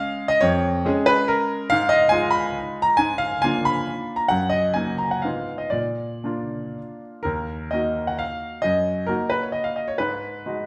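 Dotted rhythms drive this capricious, nostalgic romantic classical dance in 3/4, a fragment in Eb minor that moves with rubato between 110 and 150 BPM. A solo concert grand piano, clear and up front with a deep bass and a vintage, short-sustained tone, spans Eb2 to Cb6 inside a wet stone room, turning to a new section on Eb minor at 7.3 seconds before reaching an Abm7 chord at 10.0 seconds.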